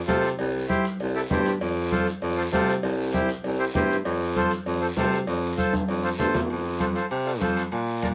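A moderate studio reverb gives this festive, sunny cumbia a tidy sheen. It moves at a brisk 196 BPM in F major, with a clear, smooth-topped baritone saxophone up front carrying the bass line and a reedy, mid-forward accordion providing accompaniment over chords that alternate between C and F. Ringing congas played with soft hands, a raspy, band-limited guiro, and distant metal-shell timbales and cowbell fill out the percussion, with a drum fill from 5.7 to 6.5 seconds leading into a new section before this fragment of a longer piece breaks off.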